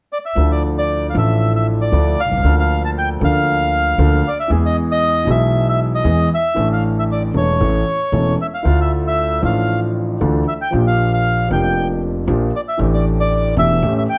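A rubato tango in 4/4 carries a passionate, tense mood through this short cut from a longer piece, with the bandoneon opening at 0.1 s on a reedy, smooth, up-front melody in its high register, touched by slapback echo. From 0.4 s a warm concert grand piano adds accompaniment with deep bass and long sustain, while a pizzicato upright bass on gut strings gives a woody, thumpy, dark low end. Light reverb surrounds the trio as the harmony moves from D minor add9 through B-flat and E toward suspended A chords before settling on A7sus4.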